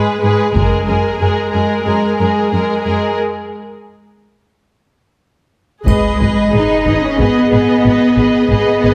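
Opening on lush, bowed strings in G# minor at 91 BPM, this heroic, epic orchestral film-score excerpt sets a warm violin melody and a dark, distant second violin line with portamento over rich, intense violas and up-front cellos, as taiko struck with hard sticks hits close and dry, double basses add soft-attack depth, and at 5.9 s the impact arrives with mellow background French horns and a faint triangle, followed a moment later by a huge sub drop, all set in a reverberant scoring stage with a heavily compressed radio sound.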